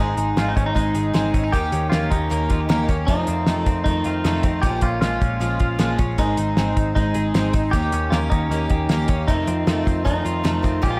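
Youthful and breezy, this jangly indie pop excerpt moves at 155 BPM in a straight 4/4 in Ab major. An up-front, scooped, twangy clean electric guitar carries the melody with spring and plate reverb over a shimmering, octave-doubled parlour twelve-string acoustic and a bright, spring-reverbed twelve-string electric playing arpeggios. A round, foam-muted vintage bass and a cloth-damped, thuddy drum kit with a fat snare, tight kick and rolled-off top anchor the chords, the drums entering at 0.2 seconds, all in a moderate club room.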